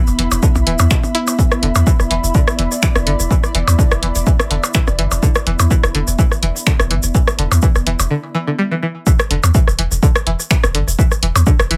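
Minimal techno at 125 BPM with a light 16th swing and a cool, hypnotic mood, built on an up-front punchy kick, a tape-warm analog drum machine with finger snaps and hi-hat, delayed electronic blips and rim click, a grainy close tube shaker, and a deep sine sub bass with a pitch-drop attack, while a twangy string-like resonator pluck with tape echo and phaser carries the riff over an ethereal, airy detuned pad and a faint pulsing gated texture that joins from 2.1 seconds, with both stopping at 8.1 seconds for a short break before the drop lands at 9.1 seconds.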